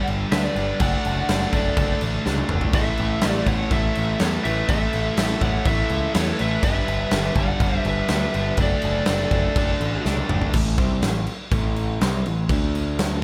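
A straight 4/4 hard rock drive at 123 BPM, this powerful, energetic excerpt pairs a cranked small-amp lead guitar carrying the melody with tape echo against a darker high-gain second line in the background, over riffs from an overdriven semi-hollow guitar and a bright, scooped high-gain guitar, a growling overdriven picked bass and a punchy, up-front arena drum kit in a big room, moving from G to D/F# to A5 with drum fills at 2.3 and 10.1 seconds before the leads drop out at 10 seconds and the scooped guitar near 10.5 seconds, leaving the semi-hollow guitar, bass and drums to push toward D5.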